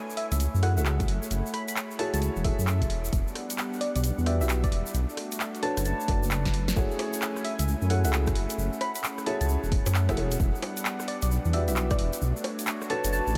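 A smooth, warbling analog pad with sidechain pumping opens this moody, soulful two-step UK garage excerpt, joined almost at once by a grainy tube shaker, a round, keys-like FM synth lead dressed in chorus, phaser and delay, and a house kit of bongos, handclaps, rim clicks, bright hats and a punchy snare, while a dark, rumbling detuned saw bass sits up front, a worn, boxy grand piano adds intimate stabs with lush chorus and delay, an electronic kick enters at 1.0 s, and a drum fill at 6.4 s leads into the drop at 6.8 s.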